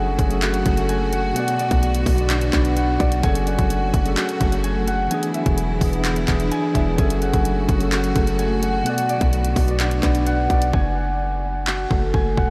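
A half-time trap groove at 128 BPM in 4/4 drives this dark, menacing hip hop excerpt in F# minor. The trap drum kit enters at 0.2 seconds with a hard-clipped kick, bright hats and handclaps, overdriven and up front, while a punchy, heavy 808-style bass with a sine body and a noise layer hits with a fast attack and decays. Over it, a thumb-plucked concert harp rings out arpeggios through a low-pass filter and analog delay, and a mellow tine electric piano, clean and heard as if through built-in speakers, plays filtered accompaniment. A lush, smooth symphonic string section holds bowed, close chords with vibrato, moving through F#madd9, Bm and E7. At 10.7 seconds the strings stop for a break and the piano follows at 10.8 seconds, leaving harp, bass and drums, all within a dreamy mix soaked in huge ambient reverb.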